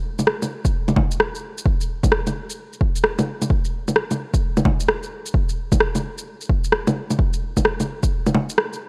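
A punchy, overdriven electronic kick sits up front beside layered electronic bongos, shaker and rim click in this rainy, melancholic future garage fragment, its swung groove framed by light digital ambience and a dry, gritty sound until the kick drops out at 8.1 seconds, leaving the bongos, shaker and rim click to close the fragment.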